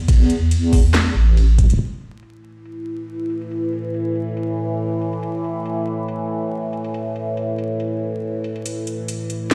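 Deep dubstep at 140 BPM in a brooding, heavy half-time feel with a light swing, cut from a longer piece. It opens on a drop in which a deep, dark wobble bass of detuned square and sine tones with chorus sits up front beside a knocking electronic kick, the kick ending at 1.7 seconds and the bass at 1.8 seconds, while a garage drum kit of cracking snare, metallic hi-hats, ride cymbal and handclaps plays on with low-pass filtering on its snare, hats and cymbals. From 1.9 seconds a resonant, overtone-sweeping sawtooth drone with a slow attack, long release, chorus and its own reverb sustains an A5 chord, and the whole recording sounds as if played on a big sound system in a bare stone room, with vinyl crackle.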